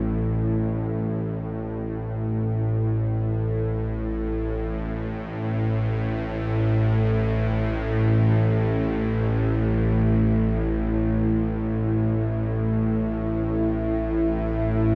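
A string-like, bowed-sounding drone stands up front in this cavernous slice of dark ambient music, cut from a longer piece and floating in free time. Its tense, bright sawtooth tone is thickened by detuned unison voices, a thin noise layer and a touch of vibrato, holding low between A1 and A2 from the first moment with slow attacks and long, lingering releases. At 8.9 seconds a deep, moody pad joins above it, sustaining mellow chords in a higher register from A3 to E5, its sine and sub-octave layers softened by chorus and sitting quieter in the mix. The whole excerpt rests on a single A5 harmony, with instruments tuned to A4 at 442 Hz, giving it an ominous stillness. A wet cathedral reverb with a 6.1-second decay and dark, warm production let each sound hang in a vast, shadowy space.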